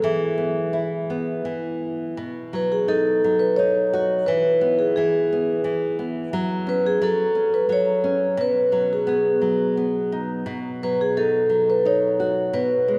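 Swaying in a gentle three-beat lilt, this sleepy, tender children's lullaby sets a mellow, ringing vibraphone melody, played up front with soft mallets and the motor off, over a fingerpicked nylon-string guitar with fresh strings and a classical touch, all bathed in a long cathedral reverb that fills the church-like space.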